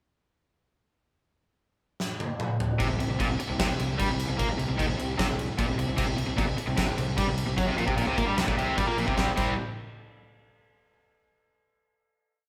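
A huge arena drum kit opens this short, aggressive hard rock piece with a fill at 2.0 seconds, closing out the pickup bar with crash cymbal, kick, snare and toms. At 2.8 seconds the band lands on a C5 power chord and launches into a driving single-note riff at 151 BPM in a straight 4/4. Two bright, picked, overdriven electric guitars carry the riff, with the crunchy one in front and the distorted one sitting further back. A fuzz-laden fingered bass, round and punchy, doubles the guitar riff in driving eighth notes. The drums sit up front with a fat snare, a punchy kick and a big groove, all heard as a band playing live in one large studio room with a moderate reverb tail. The piece ends on a final chord held from 9.2 seconds.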